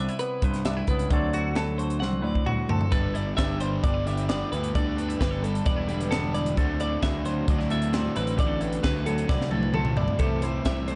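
Wistful yet bright, this math rock and midwest emo excerpt moves at 132 BPM in 4/4 in G major. A clean, fingered twangy electric guitar and a bright, picked twelve-string electric guitar, glistening with spring reverb, open over a fuzzy, overdriven picked bass and a crisp, airy drum kit with a high-tuned snare and punchy kick placed up front. Drum fills land at 2.0 and 9.3 seconds, and a double-tracked crunchy overdriven guitar riff enters at 2.9 seconds as the chords pass from Cmaj7 and D7 to G69, D9 and Am7/C, all within a dark, lightly reverberant production.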